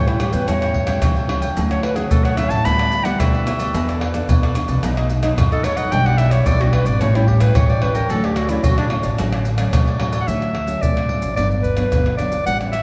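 Joyful and festive, this samba and choro fragment features a bright, classical-style clarinet up front, carrying the melody as a solo through the first 10.3 seconds. A crisp, picked cavaquinho sits in the background until it drops out at 10.3 seconds, while a deep, fingerpicked nylon-string guitar and a woody, growly pizzicato upright bass hold the harmony and low end. Maracas, pandeiro, tamborim, agogo bells and a tight surdo ring out up front in a live room, all set in the lush reverb of a concert hall.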